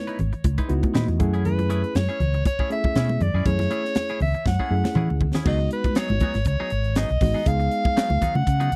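A clear soprano saxophone with light vibrato carries the melody over a barky, lightly overdriven reed electric piano, opening this intense, slick electric jazz fusion excerpt at 120 BPM in 4/4 with a 16th-note swing, moving from C#m9 to F#m9 and later to C#9sus4 at 5.5 seconds. A crisp fusion drum kit with bright cymbals and a high-tuned snare sits up front beside a dark, round fretless bass, while high-tuned congas play with hard hands in the background and a clean semi-hollow guitar adds compressed stabs with subtle chorus. The electric piano plays a fill early on and the drums play a fill from 4.5 to 5.5 seconds, all captured in a dry, close 1970s-style studio sound.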